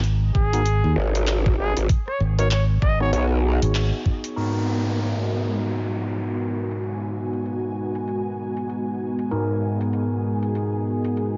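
A lightly reverberant, digital-sounding mix with a dulled top end frames this playful, swaggering swung glitch hop passage, cut from a longer piece. A knocking, up-front electronic kick, a dubstep kit with bright filtered hats, claps and rim clicks, a direct fingered electric bass and a saturated, wobbling growl bass with chorus drive the opening, while a smooth solo trumpet with dub echo states a brief classical-style line, and a gritty, amp-driven tine electric piano stabs through phaser and pumping echo until the end. After a band accent around 3.7 seconds, a downlifter descends from 4.4 seconds as a moody, detuned analog pad and then an ethereal, mellow airy pad swell in beneath the pulsing stabs.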